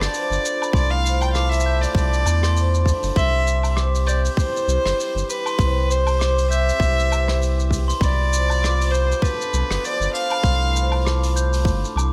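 Pastoral and playful, this swung folktronica fragment sets a dark, woody violin melody with vibrato, portamento and delay over shimmering, hammered cimbalom arpeggios, also delayed, and a round, deep analog bass sitting up front. A vintage brush kit with hi-hat, rim click, shaker and woodblock plays from the start, an overdriven electronic kick with a tight, roomy punch arrives at 0.7 seconds, and a mellow, bell-like glockenspiel struck with rubber mallets adds a delayed second line from 0.6 seconds. The harmony moves between Dm over C, C and G7 over C, all set in a studio ambience.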